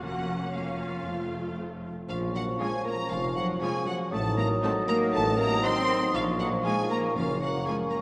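A straight 4/4 pulse drives this playful, whimsical film cue, whose sneaky, quirky mood comes from its minor harmony and a passing diminished chord. From the start, a clear, focused violin section carries the melody high over a dark, distant clarinet second line, while a rich background violin section, lush violas with portamento and smooth cellos fill in beneath. A concert harp rings out thumb-plucked arpeggios, and a bowed double bass section anchors the low end. At 2.1 seconds the texture grows: a pure, hollow flute adds a high second line, a dark bassoon joins the accompaniment, a mellow French horn section holds sustained chords in the distance, and a very quiet tuba joins the bass. The whole ensemble sits in a wet concert hall reverb, giving this fragment of a longer piece a roomy, cinematic glow.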